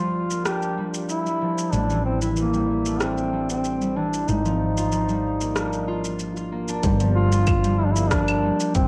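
Cassette-tinged home-recording sound in a moderate spring reverb frames this meditative, mystical organic downtempo piece at 94 BPM in G dorian, where a mellow, up-front duduk sings a folk-style solo melody with scooped notes over bright, ringing fingerpicked concert harp arpeggios that carry tape echo and a filter sweep until 6.8 seconds, a dark, round fretless electric bass pumps beneath through ensemble chorus, a tape-warm deep house kit of claves, metallic hi-hat, rim click and shaker enters at 0.3 seconds on lightly swung 16ths, and a punchy overdriven electronic kick joins at 6.8 seconds.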